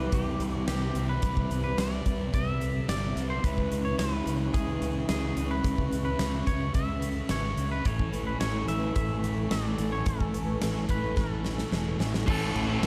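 Lightly reverberant and full, this wistful, dreamy shoegaze and dream-pop rock excerpt moves at 109 BPM in 4/4 in A major over Cmaj9, C#m7 and Amaj7 chords, with a huge arena drum kit up front from 0.1 s (punchy kick, fat snare, bright cymbals, and a fill from 11.2 to 12.3 s), a growling overdriven fingered bass, a dark fuzz guitar riff in the background, an overdriven semi-hollow guitar riff washed in reverse reverb, a twangy clean electric guitar melody trailing tape echo, shimmering octave-doubled twelve-string acoustic arpeggios with subtle chorus and tape echo, a mellow, flute-like pad holding chorused chords in the background, and a raw, lo-fi, double-tracked garage guitar riff entering at 12.3 s.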